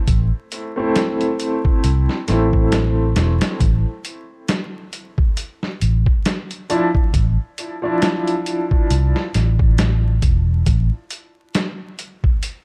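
Smoky and brooding, this trip hop excerpt at 68 BPM sets a gritty, pitched-down boom bap sampler-style drum kit with a thumpy kick and medium-tuned snare in a small room, under a round, amped fingered electric bass and a woody, mellow upright piano with audible action noise, tremolo and tape echo, moving from Am to Dmadd9/A amid vinyl crackle before the bass drops out at 10.9 seconds and the drums carry on to 12.6 seconds.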